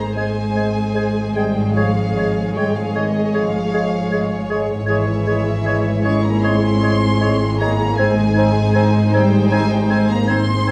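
A dark, warm recital-hall sound with a wet reverberant glow frames this serene excerpt from a slow romantic orchestral movement, moving with rubato at about 77 BPM in 4/4 over an Ab major harmony that darkens briefly to Db minor before returning home. A rich, smooth violin section carries the melody with vibrato, while a second sul tasto violin line, an airy flute, a mellow cor anglais and a clarinet add soft supporting lines, and the viola section and a light-vibrato bassoon fill in the accompaniment. Underneath, a tight French horn section holds dark sustained chords, a very quiet thumb-plucked harp rings out arpeggios, and an intimate cello section joins a double bass section with expressive portamento on the bass.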